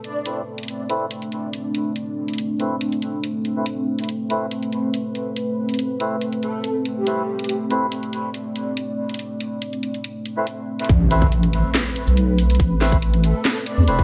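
Dark and meditative, this deep dubstep excerpt moves at a half-time pace, built on a moody, detuned analog pad sustaining an Amadd9 chord under a garage kit of cracking snare, handclaps, hi-hat and shaker, while a reedy, nasal melodica plays filtered stabs with dub echo. A breathy, flute-like synth lead with vibrato drifts in for brief phrases through ensemble chorus and echo. At 10.9 seconds the drop arrives with an electronic impact in the background, a tight electronic kick and a deep, wobbling bass placed up front, all set in light reverb.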